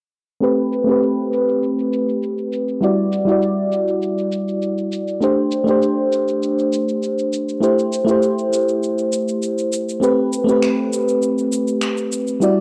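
Sunset chillout in A dorian at 100 BPM, smooth and wistful, built on a mellow, round FM electric piano that sits dark and up front with chorus, tape echo and a filter sweep as it moves through Am9, Em9, D7sus4 and C6 before returning to Am9 at 10.0 seconds. Beneath it, a layered electronic shaker and finger snaps sit low in the mix, softened by low-pass filtering. A lush hall reverb and the gritty character of a cassette recording frame this short passage cut from a longer piece.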